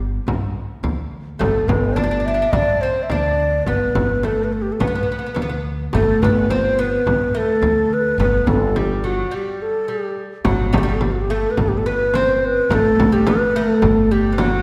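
A generous scoring-stage reverb fills this recording, setting the ensemble some distance back in the hall. The piece is a festive, stately Turkish makam ensemble in G makam rast, moving at a steady 106 BPM in a straight 4/4. An upright bass opens the music with dark, growly pizzicato on steel strings, and a deep, large frame drum follows almost at once, close and dry. At 1.4 s a breathy, mellow reed-cane ney takes the melody up front, its straight, tongued tone having rolled-off highs, while a bright, fretless oud plucked with a plectrum adds a woody, double-string second line. A break arrives at 9.3 s, and a new section begins at 10.4 s before this clip of a longer piece ends.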